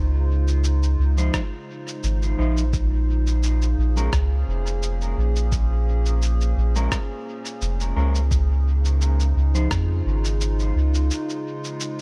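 A digital ambience surrounds this meditative, deep ambient dub fragment: a warbling, detuned tape-like pad holds dark, chorused chords over a round, soft sub bass that sits up front until 11.1 s, leaving a brief break. Muffled, pitched-down electronic cabasa and rim click enter at 0.5 s trailing dub echo, joined by a compressed, thumpy electronic kick, while a clean, fingered electric guitar adds mellow stabs through its own dub echo. The harmony moves between Dbmaj9 and Bbm7 with a gently swung sixteenth-note feel.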